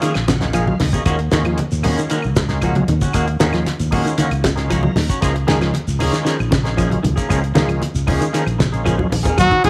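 Afrobeat with a driving, defiant mood, cut from a longer piece and built on a steady groove in four. A cloth-damped drum kit sets a thuddy, mid-forward pulse with a fat snare and tight kick, joined by a round, dark fingered electric bass and low-tuned congas with a bright, thin skin, while a grainy shekere and woody, dry claves sit in the background. A gritty, overdriven tonewheel organ with percussive attack and chorus vibrato fills out the harmony and adds fills at the start and again near 4.4 seconds. A clean, picked electric guitar plays quiet arpeggios, and a twangy guitar at the edge of break-up, treated with phaser, adds stabs before a drum fill around 8.6 seconds. At 9.4 seconds a brilliant, punchy trumpet bursts up front with vibrato, shadowed in the background by a plectrum-plucked fretless oud with double strings and slapback echo, all set in a small room with light reverb.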